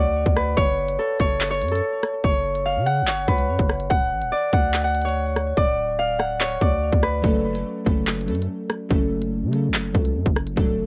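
A dry, lo-fi home cassette sound gives this short cut from a longer hip hop drill track a menacing, tense half-time feel. An up-front, fingerpicked Celtic harp rings out the melody through a low-pass filter and tape echo over a deep, sine-like 808-style bass with long decaying notes, while an electronic drum kit of hard-clipped kick, crisp hi-hat, handclaps and rim clicks mutes its hats from 5.6 to 7.2 seconds. At 7.2 seconds glassy, full-bodied digital keys with chorus and a filter sweep join as the chords shift between D and F# minor.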